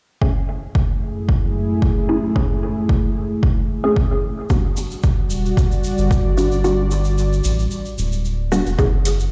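A lightly swung 112 BPM 4/4 pulse rides on a punchy, overdriven kick that sits up front in a large reverb and drops out at 6.6 seconds, while a grainy, distant egg shaker joins at 4.5 seconds and a very quiet, metallic hi-hat appears only at the close. This meditative, deep dub techno excerpt in F# phrygian moves from F#m9 to a rootless Em9. A moody, evolving sawtooth pad with chorus and a muted, phaser-coloured chord stab with dub echo both pump against the kick, and a round, wave-folded analog bass enters at 5.3 seconds, all in a bare room with large studio reverb.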